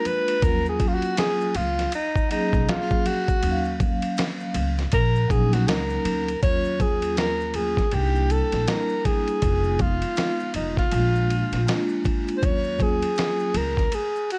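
Worn, warbling cassette tape with pitch drift and light small-room reverb colours this smoky, mellow jazz-hop fragment at 80 BPM in Eb minor, swung on the sixteenths. A breathy, whispered alto saxophone sits up front and solos through the first 6.4 seconds. Beneath it play ringing soft-mallet vibraphone with slow motor vibrato, a woody pizzicato upright bass, a gritty, overdriven sampler-style drum kit with a thumpy kick, snare, hi-hat and ride, and very quiet congas and maracas, while the harmony moves from Ebm9 through C7, Fm7b5 and Bb7 back to Ebm9.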